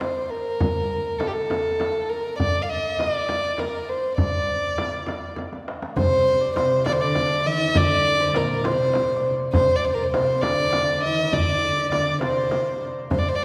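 Bathed in a lingering church reverb, this longing, melancholic Persian modal ensemble piece in D dastgah shur moves at 67 BPM in 6/8, with a dark, intimate bowed violin melody played sul tasto with light vibrato up front over a softly handled frame drum and a deep, band-limited tombak in the background, until a drum fill at 5.4 s leads into a second section at 6.0 s, where a lush symphonic cello section and a very quiet, shimmering hammered santur join with second lines.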